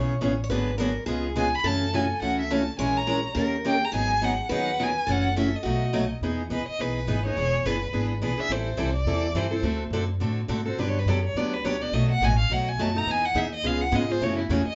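A brisk swung 4/4 at 210 BPM drives this lively, charming stretch of acoustic string swing in E major, cut from a longer piece. A woody, growly upright bass plucks out the low end, while an up-front picked acoustic guitar supplies the accompaniment, its bright fresh strings giving a boxy parlour tone with audible finger squeaks. A second picked guitar plays a quieter supporting line until 6.1 seconds. The violin enters at 1.4 seconds with a soft attack, expressive vibrato and portamento, sitting up front, then takes a solo from 6.2 seconds as the chords move through Emaj7, E7, Am7, D7 and Gmaj7. The group plays live in one room, with a short, wet studio ambience and a mellow, rounded top end.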